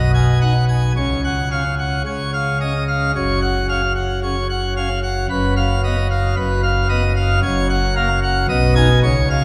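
Classical organ toccata at 112 BPM in a straight 4/4, this jubilant, majestic 9.4-second fragment of a longer piece features a solo pipe organ on full plenum with brilliant mixtures, baroque voicing and audible chiff, placed up front and spanning F#1 to G#5, moving from G#m/B through F#5/C#, C#, F#5, D#madd9/F# and F# back to G#m/B inside a wet church reverb with a 3.5-second decay.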